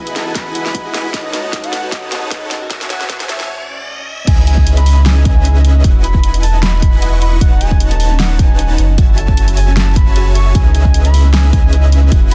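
Dense, heavily limited and dry, this euphoric, bright future bass excerpt at 153 BPM in half-time opens with a 4.3-second build-up: a drum fill, a background riser and swell, and a very quiet, ethereal, airy pad sit beneath a soft, round octave-layered synth lead with chorus and digital delay, fingerpicked Celtic harp arpeggios ringing through dub echo, huge detuned supersaw chords and a punchy layered electronic kick, before the drop at 4.3 seconds brings in a deep, thick saturated sub bass that pumps with the harp, lead and supersaws over a pop drum kit with a fat snare, as the chords cycle through Emaj9, B9/D#, F#m9 and C#m9.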